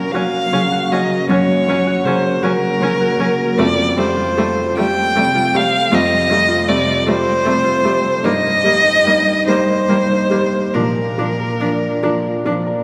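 Intimate and tender, this slow neoclassical piece for piano and strings drifts in a rubato 6/8 at about 46-53 BPM, moving from Gb through Fadd9 and Eb/G to Bb. A rich, focused solo violin carries the bowed melody up front with vibrato over a dark, woody, slightly detuned upright piano, while a clear viola and a distant cello with expressive portamento add quiet bowed lines in the background. Thumb-plucked concert harp arpeggios ring softly behind them, an ethereal, airy pad with chorus and phaser sustains very quiet chords, and a wet church reverb surrounds the whole ensemble.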